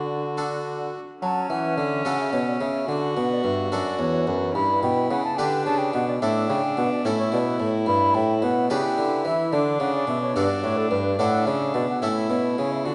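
A mellow, wooden baroque flute with vibrato carries the tongued melody of this courtly, stately renaissance-style consort dance in 6/8, over a bright, plucked harpsichord set up front, a single bowed viola with reedy gut-string tone, and a warm, smooth-topped solo bassoon on the bass line, all cut from a longer piece and bathed in a wet recital-hall reverb.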